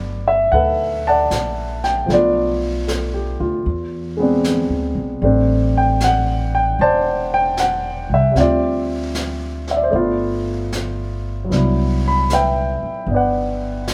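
Lightly reverberant and captured with the band playing live in one room, this tender, late-night jazz ballad in G major moves at 76 BPM with a swung 4/4 feel, as a polished, up-front grand piano comps through rich changes from Gmaj9 to Cmaj9#11 over a woody, dark pizzicato upright bass, while a natural-sounding brush kit of snare and hi-hat slips in softly at 0.5 seconds, all in a short passage cut from a longer piece.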